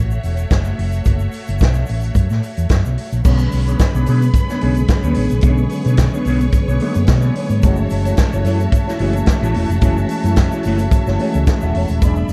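A lush, clear string section sustains chords over a round, hollow-body electric bass and a punchy, up-front vintage drum kit with a grainy egg shaker in the background, setting a driving, sultry disco groove that, at 3.2 seconds, blooms with a phaser-tinted clean electric guitar and a mellow tine electric piano as the harmony moves from F#m7 to Bm69 and back, all in a dark, dry production cut from a longer piece.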